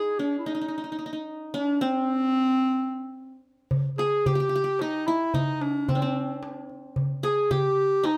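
A clarinet and a qanun open together, playing an Arabic maqam piece in C maqam saba at 111 BPM in a straight 3/4. The clarinet carries the melody up front as a solo voice, its warm tone shaded with light vibrato and a jazz-inflected phrasing, set in a plate reverb. Beneath it the qanun plays a second line, quieter in the mix, its fingerpicked triple strings giving a bright, glinting edge. At 3.7 seconds a metal-shell darbuka enters, crisp and close, with the live feel of the room around it. The mood is festive and warm, and a moderate studio ambience surrounds the ensemble through this short cut from a longer piece, which ends at 8.2 seconds.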